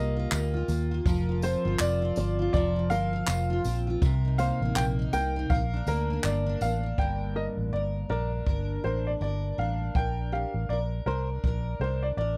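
A dry, close 1970s-style studio sound frames this heartfelt, carefree acoustic pop fragment at 81 BPM with a light sixteenth-note swing, where a clear, woody upright piano carries the melody over a full-bodied, double-tracked steel-string guitar with finger squeak, boxy thumb-plucked flamenco guitar arpeggios, a dark, round, foam-muted electric bass up front, and a small-room brush kit with a boomy kick, handclaps and tambourine entering at 0.3 s, while a separate jingly tambourine sits in the background until 6.8 s as the chords move from Ebadd9 through Cm7 and Gm to Bbadd9.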